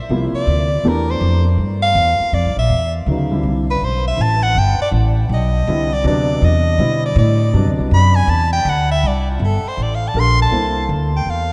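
A swung 4/4 pulse at 161 BPM drives this short modal jazz excerpt, cut from a longer piece and tuned slightly sharp to A4 = 441 Hz, with a spiritual, open mood. The upright bass, up front with a woody, pizzicato tone on steel strings, holds down the low end while a warm grand piano sits further back in accompaniment. A clear, close-miked soprano saxophone enters at 0.4 seconds and takes the solo lead, its jazz phrasing marked by vibrato and scooped notes. The harmony rests on suspended chords, C9sus4 moving to D9sus4 at 3.1 seconds, before the opening passage returns at 9.0 seconds over an Fmaj9. A moderate cathedral reverb places the trio in a vast, echoing space, and the top end is rolled off above 10.3 kHz, giving the sound a soft, dark sheen.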